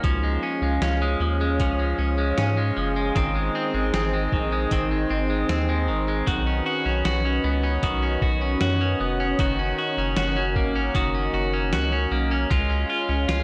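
A dry, gritty hardware recording on cassette tape, with little reverb, frames this blissful, floating dream pop excerpt at 77 BPM in 4/4 with a straight feel, in F# major. A lush unison pad holds sustained chords throughout; its detuned sawtooth and square-wave tone is thick and warbling, with a slow attack, long release and chorus, giving it a vintage, full-bodied glow. Up front, a clean electric guitar plays bright, twangy picked arpeggios through lush chorus and analog delay. Beneath it, a round analog bass sits deep and dark, its nasal triangle-and-sine tone sustained with a fast attack. A trip hop sampler-style drum kit of hi-hat, thumpy kick and medium-tuned snare sounds compressed, pitched down, gritty and tape-warm, re-recorded in a large room. The harmony moves from C# to G# at 3.2 seconds, then through Badd9 and F#6 before returning to C# at 12.5 seconds, where this fragment of a longer piece breaks off at 13.4 seconds.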